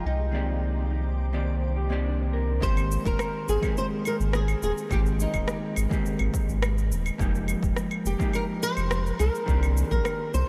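This wistful sunset chillout excerpt opens at 105 BPM with a fingerpicked flamenco guitar melody, coloured by analog chorus and tape echo, over a dark, clean hollow-body jazz guitar with its own tape echo, a shimmering, ethereal pad in the background and a round, deep analog bass up front, while a filter sweep moves over the clean electric guitar and a very quiet, mellow electric guitar adds arpeggios from 0.9 seconds. At 2.6 seconds the pad and arpeggios stop as punchy, overdriven electronic kick, shaker, claves and rim click enter, and the chords move from Cm9 through Abmaj9 and Fm11 back to Cm9. The dreamy, warm mix is soaked in a huge reverb and softened by a low-pass filter.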